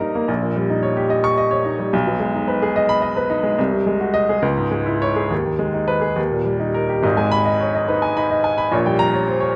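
Agitated and stormy, this brief cut from a longer classical virtuoso piano study unfolds in G# minor at 71 BPM in 6/8, its beats uneven and pushed and pulled by rubato. A clear baby grand piano plays alone throughout the roughly 9.6 seconds, ranging from a deep G#1 up to C#6. Its tone is polished and present, sitting up front in a moderate recital-hall reverb that lends the attack a natural bloom. The harmony churns through dominant tension, opening on D#7 over A#, passing through C# minor and G# minor chords, and settling on G# minor at 7.0 seconds as a new section begins. A diminished chord at 8.7 seconds keeps the turbulence unresolved as the passage breaks off.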